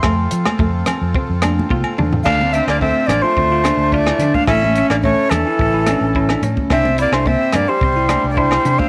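A breathy jazz flute with vibrato and a tongued chiff carries the melody up front in this warm, danceable highlife guitar band excerpt, set in D minor at 108 BPM in a straight 4/4. For the first 2.3 seconds a bell-like tine electric piano takes a solo with its clean arpeggios and a slapback echo, while a drum fill from the compact cocktail kit leads into the flute's entry at 2.2 seconds. A raspy, gritty tenor saxophone then adds a punchy second line beneath the flute, as the harmony moves through F, Dm7, A and C. A round, dark fingered electric bass and the smooth acoustic kit, with its punchy kick, crash cymbal, hi-hat, rim clicks and toms, anchor the groove, while ringing agogo bells and thin-skinned congas sit in the background. A twangy electric guitar at the edge of break-up adds background accompaniment, and a very quiet accordion holds reedy, slowly beating chords, all within a light, small-room reverb.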